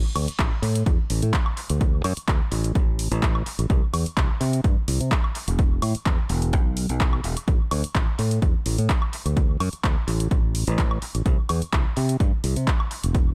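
Filtered disco house with a groovy, funky swing, cut from a longer piece, where a bright, growly fingered electric bass sits up front and pumps against an overdriven, punchy electronic kick, while a dry analog drum machine scatters handclaps, hi-hat and woodblock through tape echo and studio reverb in an echo-heavy digital space.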